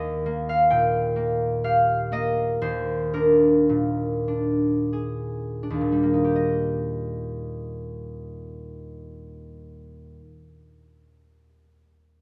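Serene and graceful, this short classical passage cut from a longer piece features a solo concert harp in 3/4 and Eb major, tuned to A4 = 438 Hz, with a rubato tempo of 40-66 BPM that slows through the opening 6.4 seconds; the fingerpicked harp sounds warm, ringing and up front across a range from Eb2 to G5, moving from Eb to Bb7/Eb and back to Eb within a moderate concert hall reverb.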